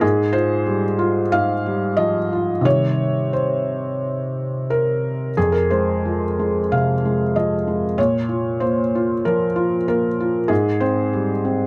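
Close, detailed microphones catch the felt-muted upright piano up front in a dry room, giving every note a soft, mellow presence. This is a short excerpt of neoclassical minimalist piano in F minor, set in 4/4 with a rubato feel that drifts between 85 and 97 BPM. The piano plays alone across the full 11.7 seconds, ranging from F2 up to F5. The harmony moves from an Fmadd9 over Ab through C minor, then settles on F minor at 5.4 seconds and moves to B-flat minor at 8.0 seconds, before a rootless Fmadd9 over Ab returns at 10.5 seconds. The mood is intimate and melancholic, a quiet moment lifted from a longer piece.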